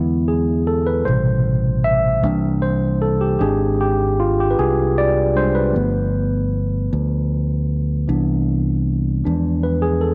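Slow gospel in 6/8 at 51 BPM, counted in dotted quarters, this short passage from a longer piece feels reverent and soulful, set in C major with a straight feel and tuned slightly low to A4 = 439 Hz. A tine electric piano carries the accompaniment and the solo for the whole 10.1 seconds, its clean tone heard through built-in speakers and placed up front. Beneath it, a fingered electric bass holds the low end in a narrow register, sounding direct and amped, punchy and close. The harmony moves richly from E7 through Am7 and C7 to a lingering Abmaj7#11 at 3.4 seconds, then settles through G7 into Cmaj7 before turning on an E7b9 at 9.3 seconds. A light reverb gives the pair a gentle sense of space while keeping both instruments intimate.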